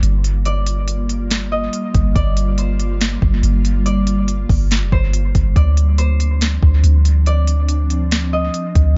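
Melancholic and hazy, this fragment of atmospheric cloud-rap moves in a half-time feel over Gm7 shifting to Dm7 at 5.6 seconds, with a thumb-plucked concert harp ringing out a high melody through dub echo, an ethereal, detuned pad breathing sustained chords through chorus, phaser and sidechain pumping, a deep, round 808-style bass sitting up front, and an overdriven R&B drum kit with a soft kick, sharp snare and crisp hats, all in an echo-heavy mix with little reverb and nothing above 7.5 kHz.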